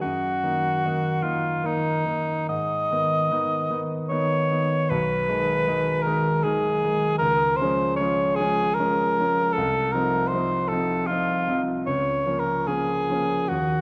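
Set in a wet concert hall with a 1.9-second reverb tail, this melancholic, solemn romantic classical duo is cut from a longer piece and moves in a rubato 3/4 at 67-79 BPM, settling into Bb minor from 7.2 s. Up front, a mellow cor anglais carries the solo melody across a range of Eb4 to Eb5 with light vibrato and a punchy edge. A clear concert grand piano accompanies throughout with deep bass, an open tone and long sustain, moving through harmonies such as Abm, Db and Bbm/Db.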